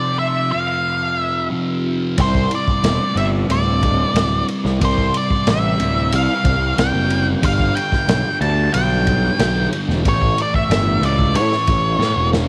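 Psychedelic rock with a hypnotic, dark mood, heard in a short section cut from a longer piece in a straight 4/4 feel. From the opening, an up-front octave-fuzz lead guitar carries the melody with picked, distorted tone and tape echo, while a double-tracked, compressed fuzz guitar plays a low riff through a phaser. At 2.2 seconds a round, punchy fuzz bass enters, overdriven and placed close, alongside a crunchy breakbeat kit of kick, snare and ride that sounds saturated and gritty with a rolled-off top in a small room. The harmony moves from F5 to Csus2, then to G at 7.4 seconds and A near the close. A drum fill at 12.0 seconds ends the passage, all set in a light studio reverb.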